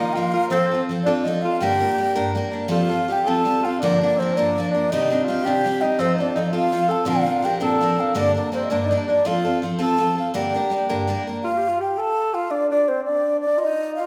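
Dark and lively with a wild edge, this short Celtic folk excerpt in G minor moves at 110 BPM in a straight 6/8. A mellow baroque flute carries the melody, its woody, airy tone softened by vibrato and soft, slightly unsteady attacks. Beneath it, an alto saxophone plays a second line in a subtone jazz style, punchy yet distant, with scooped notes that sit back in the room. A bright, full-bodied picked steel-string acoustic guitar supplies the accompaniment up front, moving through chords such as Ebsus2, F, Gm7 and Cmadd9 before it stops at 11.5 seconds. Flute and saxophone carry on to the end at 14.1 seconds, and the whole is bathed in the generous reverb of a church or concert hall.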